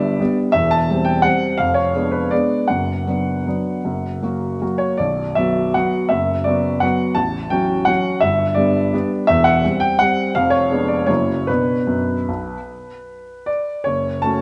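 A solo baby grand piano opens a bittersweet, nostalgic classical waltz in a flowing triple metre, its rubato phrasing stretching the lilt as the harmony circles through a diminished chord back to minor resolutions. The piano sounds clear, open and up front, with long sustain ringing across a range reaching from the deepest bass to the upper middle register. Close, detailed microphones catch the instrument inside a moderate scoring-stage reverb, and this 14.4-second passage is cut from a longer piece.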